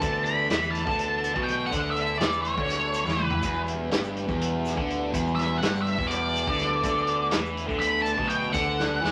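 An octave-fuzz lead guitar solos from the very start, distorted and run through wah, over a double-tracked fuzz guitar riff with phaser and a growling, overdriven picked bass, all in a trippy, dark psychedelic rock groove at 246 BPM in 7/8. A punchy vintage drum kit with a rolled-off top drives the fragment, with fills at 3.1 and 8.8 seconds, while a reedy, breathing harmonium drone sits in the background alongside a very quiet lush string machine with a slow attack and a very quiet, grainy egg shaker. Chords move from D5 to Em and back to D5 in a wet studio ambience.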